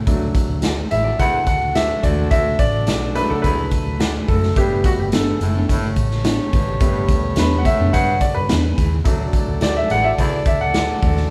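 A clear concert grand piano leads this uplifting, joyful passage of uptempo 1960s-style soul, cut from a longer piece. It sits up front with audible action noise, deep bass and long sustain, and takes the solo throughout. The music moves at 107 BPM in a straight 4/4 in D major, shifting from D to Gadd9 at 4.6 seconds and back to D at 9.1 seconds. Underneath, a raw garage drum kit drives the groove with a punchy kick, a medium-tuned snare and hi-hat, its gritty, saturated sound caught in a bright stone room, while a vintage foam-muted fingered electric bass adds dark, round low notes. A baritone saxophone with light vibrato and a soft subtone holds a riff in the background, a clean picked electric guitar adds stabs from 0.6 seconds, and a warm horn section in jazz style plays a second line from 1.2 seconds. The band sounds live in one room, wrapped in a moderate large studio reverb.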